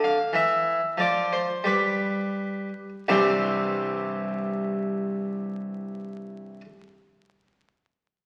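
Through the crackle of a very old 78 rpm record and a reverberant recital hall, a solo harpsichord, airy and brilliant with octave strings and placed up front, plays this radiant, dance-like baroque-style suite movement cut from a longer piece in C major at a slow 39-48 BPM with rubato, slowing down over a G7 chord before resolving to C at 3.1 seconds and ringing until 6.6 seconds.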